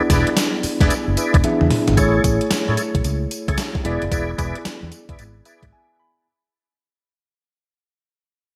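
Bright 1980s-style digital production with light reverb frames this confident, bouncy new jack swing R&B clip at 112 BPM with swung 16ths: up-front, overdriven gated drum machine beats with a thumpy kick and gated-reverb snare sit over a dark, round, punchy foam-muted fingered bass, while a lightly overdriven tonewheel organ with chorus vibrato, slow rotary speaker and delay adds full stabs, and a clean tine electric piano with medium tremolo accompanies over E7 and Amaj7, with a drum fill at 1.4 seconds, a fade-out from 2.0 seconds, and a break at 5.7 seconds that leaves the electric piano alone to finish with a fill.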